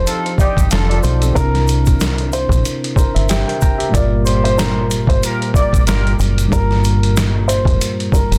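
Pitched-down, compressed sampler drums with a thumpy kick and medium-tuned snare sit up front in this dark, gritty boom-bap hip-hop excerpt at 93 BPM in G minor, over a round, punchy fingered electric bass, a worn, slightly out-of-tune tine electric piano with light overdrive, a boxy, woody upright piano carrying the melody through tape echo, vintage jazz-style horn stabs with light vibrato that stop at 6.1 seconds, and a grainy shaker tucked in the background.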